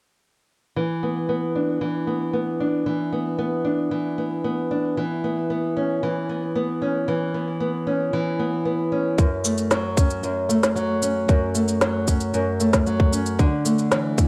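A dark, boxy nylon-string guitar enters at 0.8 seconds, fingerpicking intimate, autumnal arpeggios through a low-pass filter and tape echo, moving from E5 through C#m7/E to F#m and Dsus2 in this folktronica excerpt at 114 BPM in straight 4/4, tuned to A4 = 442 Hz. At 9.2 seconds, up-front, tape-warm electronic drums join, with a tight kick, a woody snare and a shaker, all re-recorded in a small room. Light reverb and a digital ambience surround the close, small-sounding guitar until the cut at 14.3 seconds.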